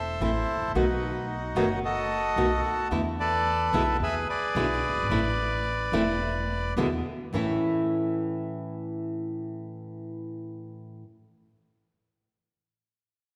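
Played rubato around 110 BPM in 4/4, this tense, dramatic tango fragment moves from A minor through B7 and E7 chords before settling on A major. A reedy, bright bandoneon carries the melody up front until 6.7 s, over a woody, thumpy pizzicato upright bass and a full-bodied, fingerpicked nylon-string guitar with audible finger squeak. After the bass drops out at 7.6 s, the guitar carries on alone to 11.0 s, all bathed in the long, wet reverb of a church or concert hall.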